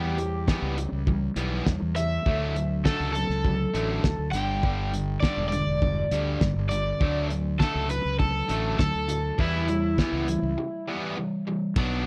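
Indie rock with a jangly, carefree mood, heard in a short excerpt cut from a longer piece and moving through Em, Dadd9, G5 and D before returning to Em. A bright, picked semi-hollow guitar carries the melody through tape echo. Beneath it sit a crunchy, double-tracked rhythm guitar riff, a growly fuzz bass and a cloth-damped, thuddy drum kit with a fat snare and dark, muffled cymbals. The sound is dry and close in a 1970s studio style, and a short break arrives at 10.6 seconds before the melody guitar drops out at 11.1 seconds.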